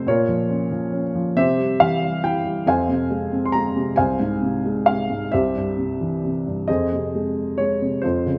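A woody upright piano with short sustain sits up front in this dark, reflective classical solo passage in F minor, cut from a longer piece, moving with rubato at 45 BPM in 6/8, spanning C2 to C6 and turning from B-flat minor through C and F minor over its 8.4 seconds, all held in a moderate recital-hall reverb with a softened, mellow top end.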